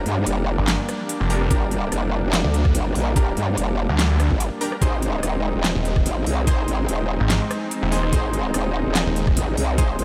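Heavy and chaotic, this cut from a longer heavy wobble dubstep piece runs at 145 BPM in a swung half-time feel, rooted in G phrygian and moving from Gm to Ab at 4.8 seconds. A growling, wobbling growl bass with a formant filter, chorus and overdrive sits up front from the start, joined at 0.6 seconds by a snarling distorted saw bass, detuned and sawtooth-edged with a moving notch. A big-room dance drum kit brings a huge snare, crisp hats, handclaps and rim clicks under studio reverb, and an electronic kick with a knocking, tape-warm punch arrives at 1.5 seconds. Beneath them, a lush, thick unison pad holds sustained chords with a vintage warble, chorus and sidechain pumping. In the background, a bold, nasal orchestra-hit-like synth stab punches through with a noise layer, filter pluck and diffuse ambient delay, all set in light reverb.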